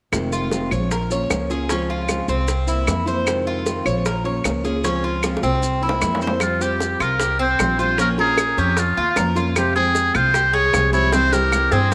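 A buzzy, thin trumpet with a metal mute takes the solo melody up front from 6.4 seconds, singing with vibrato and a smooth top in a jazz style over a nostalgic Cuban son and guajira groove in F minor at 153 BPM. From the opening, the Cuban tres spins bright, metallic arpeggios on its double strings, touched by a slapback echo, while a fingerpicked nylon-string guitar with old strings supplies dark, full-bodied accompaniment. Up front, the upright bass is plucked on gut strings with a thumpy, woody low end. Tight, high-tuned bongos played with hard hands drive the percussion, backed in the background by close, dry claves and grainy, compressed maracas. The harmony cycles through Fm7, Bbm, Dbmaj7 and C7 before the second section moves to Fsus2 and Fmadd9, with drum fills at 5.2 seconds and near the close of this excerpt from a longer piece, all set in a light, small-room reverb.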